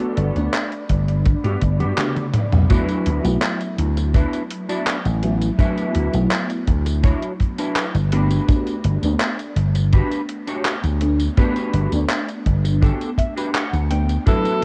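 Over a straight 4/4 pulse, an up-front gated 80s digital drum machine with overdrive and gated reverb clicks out handclaps, hi-hat, tambourine and toms, joined at 0.9 seconds by a dry, tight acoustic kick drum, with a drum fill closing the opening stretch. This nostalgic, faded vaporwave fragment, cut from a longer piece, rides on a punchy, amped vintage slap bass thickened by tube saturation. A lush, dreamy FM electric piano with a soft pad layer carries the accompaniment through chorus and tape echo, moving from Gmaj7 to D69 at 2.7 seconds, while a silky, dark string machine sustains chords in the background during the opening and again at the very end. A clean, fingered electric guitar plays a riff under analog chorus and tape echo, adding a fill near the close. At 14.3 seconds an edgy alto saxophone steps forward with a single scooped, lightly vibratoed jazz note coloured by 12-bit sampler grit, all set in a small room with the warbling pitch drift of worn cassette tape.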